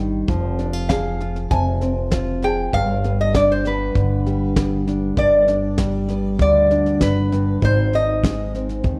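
A metallic, nasal lap resonator guitar carries the melody up front from 0.9 seconds, played with fingerpicks and slide, in this haunting, intimate acoustic folk excerpt cut from a longer piece. Beneath it, a classical, fingerpicked nylon-string guitar sits close and warm over a growly, woody pizzicato upright bass, while a dark brush kit with a fat snare and punchy kick joins at 0.3 seconds. A large studio reverb surrounds the small band as the harmony moves from F minor through G to A-flat, shifting into a new section at 5.2 seconds.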